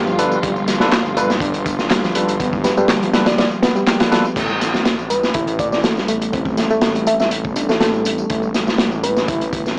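Energetic and playful, this breakbeat clip at 122 BPM rides a crunchy, up-front drum kit with punchy kick and dark cymbals, overdriven electronic tambourine and handclaps in the background, faint high-tuned congas, and a thick, menacing detuned saw bass. A reedy, worn electric piano with fast tremolo and tape echo plays a riff throughout, while a barky tine electric piano adds overdriven stabs and lush, distant strings hold chords until about 4.3 seconds, over a move from G9 to Am7. From 1.2 seconds a sparkling, bell-like FM electric piano carries the melody with chorus and phaser, and at 4.4 seconds a filter sweep begins on the reed piano, all within a dry, gritty, small-speaker sound.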